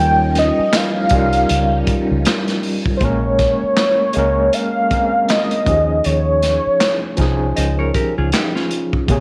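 A velvety synth lead with chorus carries the melody over a barky, overdriven tine electric piano with tremolo, a round dub-style fingered bass and a gritty, saturated breakbeat kit of kick, snare, hi-hat and handclaps in this smooth, late-night neo-soul R&B excerpt, where a swirling phased string machine holds chords until 3.0 seconds and a dark, clean hollow-body jazz guitar adds a second line from 7.6 seconds, all in light small-room ambience.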